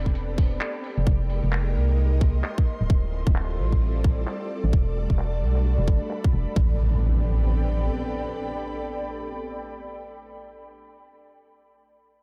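Light reverb gives this short cut from a longer UK garage track a soft, roomy sheen, with a two-step groove at 131 BPM swinging its sixteenths in A minor. A tight, layered electronic kick sits up front beside a hollow, organ-like FM bass that is dark, percussive and tube-saturated, while a gritty, compressed breakbeat kit of handclaps and hi-hat, re-recorded in a small room, runs underneath through a filter sweep with its hats and snare low-passed. Above them, a silky vintage string machine holds mellow sustained chords, and an ethereal, airy pad of detuned unison voices with a sub octave floats higher; both are chorused and pump with sidechain compression. The harmony moves through Am11, Fm11, Dm11 and Em11 before returning to Am11 at 6.6 seconds, just as the drums drop out and a background electronic impact arrives. The strings and pad then carry the bouncy, skippy mood until around 11.0 seconds, joined by the bass until about 7.9 seconds and by the impact until about 10.8 seconds.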